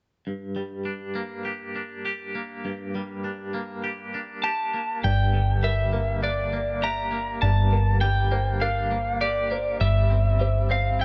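Brooding, melancholic rock in a straight 4/4, cut from a longer piece, opening on a twangy electric guitar picking clean, bright arpeggios through tremolo and digital delay before a slightly broken-up, compressed lead guitar steps up front with a delayed melody at 4.4 seconds. At 5.0 seconds a round, hollow-body fingered electric bass arrives up front, joined by a felt-muted upright piano whose mellow, intimate arpeggios sit in the background with audible action noise and their own delay. The harmony rests on G minor before shifting to C over G at 9.8 seconds, all framed by light reverb in a dark, warm production.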